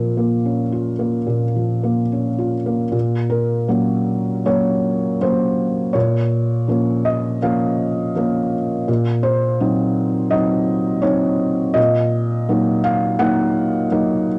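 Reflective and wistful, this short excerpt of neoclassical minimalist piano moves at 81 BPM in 4/4, with uneven, rubato timing that lets the phrases breathe. A felt-muted upright piano plays alone throughout, sitting up front with a soft, mellow, intimate tone and audible action noise that brings the listener close to the instrument. Its part spans from Bb2 to Gb5 in Bb minor, tuned slightly high at A4 = 443 Hz, and the cassette tape coloring lends the sound a vintage, smooth character. The harmony settles on Bbm before shifting at 2.9 seconds to Gb/Bb, then returns to Bbm and passes through Cdim/Bb to Ebm/Bb, with Bb in the bass beneath each change. A brief opening passage gives way to a longer second section, all set in a wet studio reverb with a short decay that suits the modest home cassette recording.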